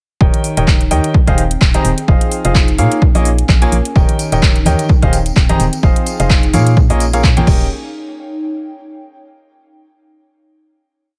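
Uplifting, euphoric piano house built on a clear concert grand riff of dotted-rhythm chords with delay, a hollow organ-like FM bass and a punchy, up-front four-on-the-floor kick, with piano and bass pumping against the kick through the drop alongside metallic programmed hats, claps and crash, while tambourine and congas join in the background at 4.0 s and a warbling, lo-fi pad with chorus rings on alone into the final note until 9.5 s.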